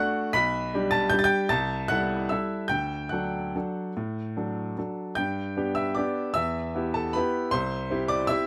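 A classical piano waltz in 3/4 at 150 BPM, graceful and sparkling, played on a solo baby grand piano in G major with uneven beats and rubato phrasing, spanning B1 to B6 across this 8.5-second fragment cut from a longer piece. The piano sounds clear, intimate and up front, its long sustain and audible action noise caught by close, detailed microphones in light reverb. The harmony moves from G/B through Am7/C and D, settling on G at 5.2 seconds before passing through Em to C.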